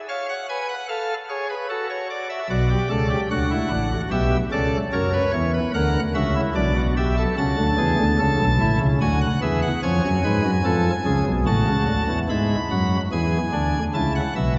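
Moving in a straight, steady three-beat metre, this brief baroque-style fugue in three voices is cut from a longer piece and carries a serious, driving mood. A single pipe organ plays it solo from 0.1 to 14.6 seconds, voiced on a nasal cornet stop with period voicing, a crisp chiff on each note's onset and a trembling tremulant, and it sits up front in the sound. The voices reach from deep in the bass up into the high treble, weaving through a restless minor-leaning progression built on dominant sevenths, slash chords and a half-diminished colour. Near 12.3 seconds the music moves into a second section that settles onto E and then A over C#. A long, wet church reverb trails behind every note, and the top end is rolled off, giving the whole recording a dusky, cavernous feel.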